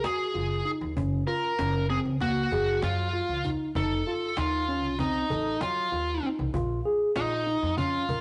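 Progressive instrumental band music in 9/8, moving at 194 BPM counted in eighths with a straight feel, in a brooding, driving excerpt cut from a longer piece. Up front, a smooth, bright overdriven electric lead guitar carries the picked melody between Eb4 and Bb4, while a mellow, clean tine electric piano plays arpeggios from Gb3 to Bb4. A woody, dark pizzicato upright bass with steel strings enters at 0.4 seconds, and a snappy cajon with snares, played with soft hands, sits in the background. The harmony moves from Ab7(no3) through Gbmaj7 and F7 to Bbm7. A moderate stone room reverb surrounds the parts, and the rough rehearsal-room sound carries a saturated, dulled top end.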